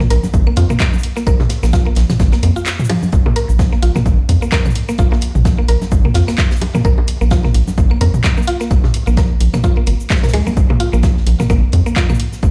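Clinical and sparse, this minimal techno excerpt at 129 BPM in 4/4 with swung 16ths sets an up-front analog electronic kick, entering at 0.3 s, and a dark, hollow, rubbery square bass under a woody, round mallet-like synth pluck riff that is bright with chorus, delay and sidechain pumping, while a punchy analog drum machine adds cabasa, handclaps and hi-hat, tape-echoed electronic toms, congas, claves and bongos join in, and a dry, airy funk kit's high-passed hi-hat and snare sit in the background, with a brief break at 2.7 s and the mix heard over a big sound system in a bare, stone-walled room.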